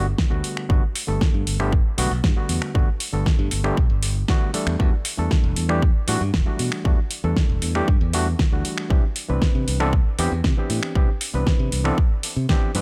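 A sunny, feel-good slice of nu-disco, cut from a longer piece, moves at a straight 4/4 pulse over a lush progression from Gmaj9 through Em11 to Cmaj9. An overdriven reed electric piano carries the accompaniment in its middle range, its barky, gritty tone pushed through a combo amp and trailed by tape echo, with sidechain pumping giving it a breathing lilt. Beneath it, a bright, growly fingered electric bass plays direct and also pumps with the sidechain. An up-front, punchy electronic kick drives the groove from 0.2 seconds, layered with a pop drum kit of finger snaps, metallic hi-hats and a fat snare. The sound is dry and close, with little reverb, so the kick sits firmly at the front.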